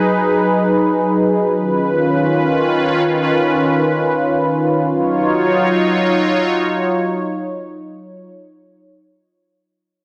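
A hazy cassette home recording, washed in moderate spring reverb and digital ambience, frames this short, ethereal hip hop excerpt in free time and Eb minor, where a lone sweeping, resonant pad (an airy, detuned sawtooth with a noise layer, chorus, slow attack, filter swell and long release) sits bright and up front across Eb3 to Db5, moving from Abm7 to Db9 before settling on Ebm9 at 4.9 seconds.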